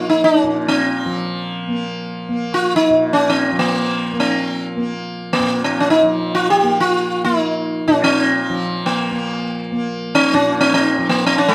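Close, detailed microphones capture this short fragment of a longer Hindustani classical performance, set in a moderate recital hall reverb that gives the sound a gentle bloom. The music unfolds in free time in raga kafi on Bb, tuned to A4 = 445 Hz, with a longing, meditative mood. Up front, the sitar carries the melody from start to finish across its 11.5 seconds, its plectrum-plucked notes round and buzzing, with sympathetic strings ringing beneath each phrase. The tanpura sits further back throughout, its softly plucked drone shimmering in a low register around Bb. Together the two acoustic instruments create an intimate, contemplative atmosphere that feels like a glimpse into an unfolding recital.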